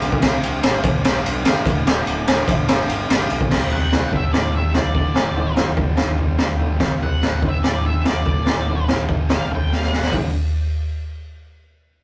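A swaggering, rowdy garage rock clip, cut from a longer piece, opens with a raw drum kit up front, a fuzz guitar riff set in the background and a growling fingered electric bass sitting very quiet underneath, all at a straight 145 BPM in 4/4. The drums dominate the mix, with a high-tuned snare, boomy kick, gritty saturation and a rolled-off top, while the compressed, double-tracked fuzz guitar rings brightly from its place in the background and the overdriven bass adds a low, amped edge. At 3.7 seconds an octave-fuzz lead guitar enters with a warm, distorted solo high above the riff. The harmony cycles through C, G over B, D and G in a D mixolydian setting. A drum fill at 9.7 seconds closes the solo, and the whole thing carries a rough rehearsal-room character with tube saturation and light reverb.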